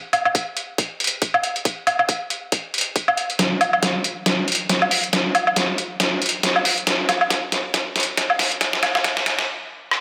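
Dark and cavernous, this deep dubstep excerpt at 138 BPM rides a half-time feel with a swung sixteenth-note lilt, as an up-front, overdriven trip hop sampler-style kit of hi-hat, rim click, medium-tuned snare and woodblock, pitched down and muffled like a re-recording in a small room, builds through a drum fill from 3.4 to 9.5 seconds over a tight, tape-warm electronic kick before everything halts at 9.5 seconds, all bathed in a moderate echo chamber reverb.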